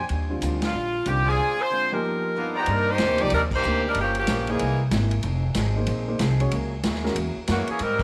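Big band swing in C minor at 187 BPM, this brassy, swinging fragment of a longer piece opens with bright trumpet section stabs that drop out at 3.0 seconds, while a woody pizzicato upright bass sits up front and a roomy, distant drum kit with a punchy kick drives the swing under band accents at 0.6 and 3.5 seconds. The edgy, close-miked saxophone section carries the melody with vibrato, pausing after 4.8 seconds before returning at 7.5, as a concert grand piano with audible action noise and long sustain comps alongside a boxy, picked ladder-braced acoustic guitar with finger squeak in the background. A moderate echo chamber reverb frames the ensemble as the harmony moves through altered dominants to a closing F#9.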